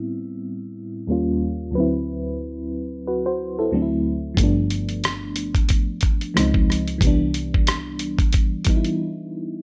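A lightly swung 16th-note groove at 91 BPM in 4/4 sets this introspective, late-night R&B and neo-soul fragment, as a full-bodied FM electric piano with tremolo opens alone, its low-pass filter sweeping across the whole passage over lush extended chords moving from Am9 toward Cmaj9. At 4.4 seconds a gritty, compressed sampler-style drum kit with a thumpy kick, hi-hat and rim click joins up front alongside a dark bowed double bass played sul tasto with light vibrato and an airy, intimate tone. Both drop out at 9.0 seconds, leaving the electric piano alone in a brief break under light reverb.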